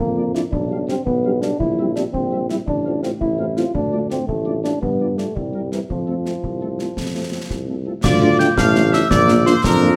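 A clear trumpet section carries the melody of this rousing, festive wind-band march in 6/8 and F major, moving at 112 BPM in dotted quarters, over a warm tuba bass, an up-front euphonium second line that drops out at 7.8 seconds, and a dark, soft-attacked French horn accompaniment in the background. Concert snare, bass drum and clash cymbals with dark cymbals sound close and dry. At 8.0 seconds a mellow, bell-like glockenspiel played with rubber mallets and punchy trombone chords with light vibrato join, in a close, detailed recording with light reverb, cut from a longer piece.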